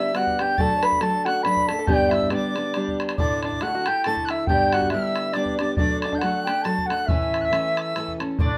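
A moderately reverberant studio sound frames this bright, rollicking Celtic waltz in A mixolydian at 138 BPM with a swung lilt, cut from a longer piece, where a mellow, distant wooden flute with vibrato carries the melody over an up-front fingerpicked steel-string acoustic guitar with audible finger squeak, while an airy tin whistle with chiff and a twangy, plunky open-back banjo in the background add second lines, and a boomy, saturated bodhran joins at 0.1 seconds, with the banjo stopping at 8.2 seconds.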